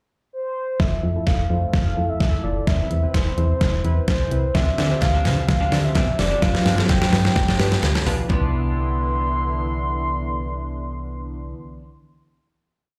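An overdriven pop drum kit with a knocking kick and deep snare drives this euphoric, upbeat dance-pop piece in C major at 128 BPM, building from 0.8 s with a drum fill and filter sweep beneath a punchy, round FM octave bass, glassy syncopated digital keys, an evolving detuned supersaw pad in the background, and a mellow horn-like synth lead with vibrato singing hook phrases, while a clean, twangy twelve-string electric guitar adds a choppy funk-style riff from 4.5 s, very quiet crisp handclaps mark the backbeat, and the drums stop at 8.4 s as the remaining parts hold a final Cmaj9, the whole mix heard as a live gig through the venue's PA with club reverb.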